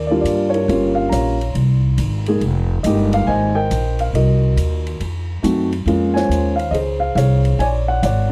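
Late-night and moody, this short cut from a longer jazz piano trio swings at 139 BPM in F minor, with a dark, mellow grand piano carrying the melody up front over an intimate hint of action noise, a woody, thumpy pizzicato upright bass on gut strings, and a softer, airy drum kit of hi-hat, ride and medium-tuned snare entering at 0.3 seconds, all in a dry, close 1970s-style studio sound as the chords move from Ebmaj9 to a Bb7alt by the close.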